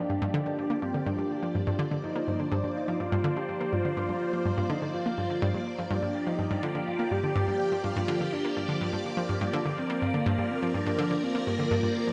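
A straight 4/4 pulse at 124 BPM drives this hypnotic, mysterious piece of ambient, sequencer-driven space music in G minor, heard as a 12-second excerpt resting on a single Gm7 chord. Up front, a round, detuned analog pluck built from sawtooth and square waves with a noise layer plays a low riff between G2 and Bb3, its fast attack and short decay dressed in chorus and delay. Above it, a bright, vintage string machine holds sustained chords from F3 to D5, swirling and evolving through ensemble chorus and phaser. A breathy, flute-like synth lead of triangle and sine tones with a soft attack and vibrato carries the melody between Bb3 and G4, colored by analog chorus and delay. In the background sits a very quiet, resonant, bubbling texture of random filter steps with a long release, while a moderate plate reverb with a 3.5-second decay gives the mix its spacious depth.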